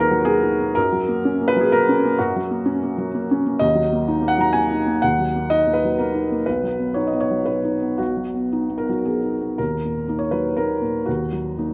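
A soft, intimate sound opens this short fragment from a longer piece: a felt-muted upright piano sits up front, its tone mellow and muffled, set in a moderate concert hall reverb with a 2.2-second decay. This is neoclassical minimalist piano in Eb minor, reflective and melancholic, moving in 3/4 at a rubato pace that drifts between 110 and 132 BPM. The solo piano plays for the full 11.7 seconds, ranging from B1 up to Bb5. The harmony rests on Eb minor, shifts to Gb, returns to Eb minor, and then moves to B before settling back on Eb minor at 9.6 seconds, where a new section begins. The tuning sits slightly high, at A4 = 443 Hz.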